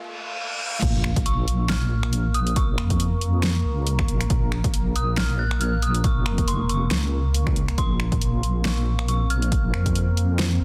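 Cavernous and dark, this deep dubstep excerpt in Bb minor moves at 138 BPM with a swung, half-time feel, opening on a moody, sub-octave ambient pad with chorus, reverb and vintage 12-bit sampler grit, while a riser and reverse cymbal build through the first 0.8 seconds. At 0.8 seconds the drop lands with a sub-drop impact, bringing in an up-front, detuned wobble bass, a punchy overdriven electronic kick, and a layered deep house kit of crash, finger snaps, hi-hat and a fat, soft-clipped snare. From 1.3 seconds an eerie, inharmonic FM bell with chorus and dub echo floats high above, all within a dense, heavily limited master dusted with vinyl crackle.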